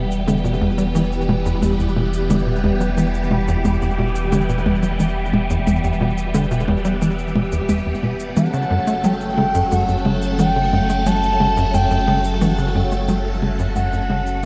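Hypnotic and cosmic, this is ambient, sequencer-driven space music at 89 BPM in 4/4 with a straight feel, set in E dorian and moving from Em to F#m, cut from a longer piece. A tight, punchy sequencer bass drives a dark, filter-plucked sawtooth riff touched with subtle chorus and delay, while a deep, round sine sub bass holds the floor beneath it. Above, a phased string machine sustains swirling, vintage chords, bright and up front, washed in ensemble chorus, phaser and shimmer reverb. Electronic cabasa and toms with an analog, tape-tinged character tick along through delay from 0.1 s. At 8.4 s, as the harmony shifts, an expressive portamento lead enters with a smooth, wave-folded voice, gliding with vibrato through chorus, shimmer reverb and delay. The echo-heavy mix sits in a moderate plate reverb and fades out from 12.0 s to the close at 14.5 s.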